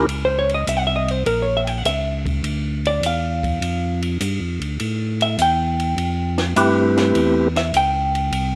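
This soul jazz organ trio fragment has a swinging, bluesy mood and is cut from a longer piece. A hollow-body jazz guitar takes the solo throughout, its electric tone clean, fingered and compressed, sitting up front over chords that move from Bbmadd9 to G5 to Am7. Beneath it, a tonewheel organ carries the bass line with a full, lightly overdriven sound, key click and a slow rotary speaker. A second, percussive tonewheel organ, soft and flute-like with third harmonic percussion and a fast rotary speaker, touches the melody at the very start and again from 6.6 to 7.5 seconds. The compact cocktail drum kit sounds acoustic and dry, with dark cymbals, a high-tuned snare and a punchy kick, all set in a small room with light reverb.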